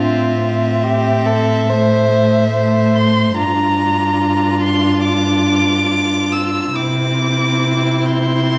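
Classical chamber music for string quartet: a slow, serene romantic movement at 70 BPM in 4/4 and F major, played with rubato and cut from a longer piece. The first violin carries a lyrical melody up front with vibrato and an airy sul tasto bow, while a pure, floating second violin sings a rich inner line beneath it. The viola's intimate, lightly vibrating accompaniment rests over a close, warm cello bass, all four players bowing with soft attacks as the harmony moves from F/A to Gm7 at 3.4 seconds and on to C, wrapped in a wet recital-hall reverb with a 1.5-second decay.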